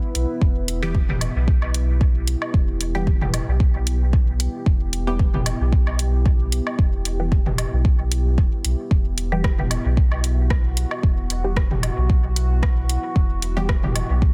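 A dark ambient pad in E minor opens this meditative, nocturnal dub techno piece at 113 BPM, its detuned sawtooth chords pumping under a sidechain, as a round sine sub bass, an up-front deep kick, overdriven deep house hats and rim clicks, a muted filtered chord stab with phaser, dub echo and a filter sweep, and overdriven electronic toms and woodblock re-recorded in a large room fill out a dense, heavily limited mix.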